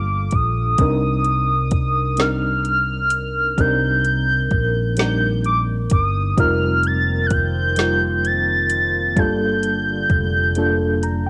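A slow, straight six-eight pulse at 43 BPM, counted in dotted quarters, carries this late-night, yearning R&B fragment, cut from a longer piece and tuned slightly low to A4 = 438 Hz. A smooth electronic drum kit enters at 0.3 s with a soft kick, woody snare and metallic hats, while a dark, round fretless bass sits up front, colored by tube saturation and subtle chorus. A mellow FM electric piano supplies the harmony with fast-attack, decaying, warbling tones, shaded by chorus, tremolo and a vintage noise layer, as the chords move from Gm7 through Cm9 and F7sus4 back to Gm7. Above it, a velvety synth lead blending sawtooth and triangle waves carries the melody high in its register, with vibrato and chorus. At 6.8 s an airy, detuned analog pad drifts in with a slow attack far in the background, and from 10.6 s both the drums and the electric piano play a fill. Light reverb and a cassette-tape character give this home recording a hazy, intimate feel.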